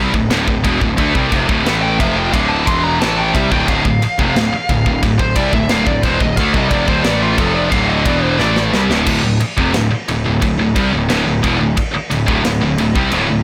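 A scooped, up-front high-gain guitar drives this aggressive heavy metal excerpt in D minor, playing a riff over a D minor chord at 89 BPM in a straight 4/4. Beneath it, a quieter bright high-gain guitar and a very quiet, dark, double-tracked fuzz guitar thicken the same riff, while a growly picked bass, overdriven with fuzz, anchors the low end. A tight metal drum kit plays throughout with crash and ride cymbals, snare and a tight kick, sounding polished and airy in a big room. From 1.8 to 8.6 seconds, a dark, distorted lead guitar soars high above the riff, its notes trailed by tape echo, and a drum fill at 8.4 seconds carries the music into a new section. The whole recording sits in a small room and is blown-out and overdriven, giving it a raw, saturated heaviness.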